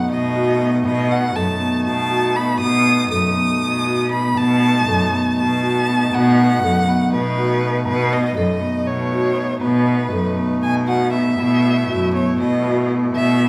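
Contemporary instrumental chamber music in 7/8, this short cut from a longer piece moves at 240 BPM counted in eighths with a straight feel, centred on B mixolydian and tuned to A4 = 438 Hz, and its mood is restless and shimmering. A single bowed violin carries the melody across a range of B4 to D#6, close and up front, with expressive vibrato, a soft attack and gliding portamento. Beneath it, a vibraphone played with soft mallets and its motor off spins arpeggios between B3 and A4, its metallic ring kept mellow and airy. A hand-pumped harmonium holds sustained chords with a reedy, nasal, breathing tone, while one bowed cello enters at 0.1 s to anchor the bass between F#2 and B2, clear, smooth and even despite sounding distant. The harmony rests on B7 until 11.4 s, when it shifts to B7sus4 for the closing passage, and the whole ensemble sits in a moderate recital hall reverb of about 1.5 seconds.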